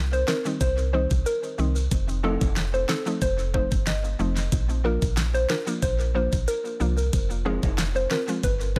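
A woody, round FM bass opens this bouncy, tough dancehall excerpt at 92 BPM, sitting up front in a dry, echo-heavy mix as a hollow, detuned square-wave pluck carries the melody with chorus and tape echo, and bright maracas and timbales sound distant in a large room. From 0.3 seconds a layered electronic pop kit with a knocking kick, fat snare and crisp hats joins alongside a percussive, triangle-toned mallet-like synth pluck with chorus and tape echo. The harmony moves through Cm, F7, Bb and Fm over this short cut.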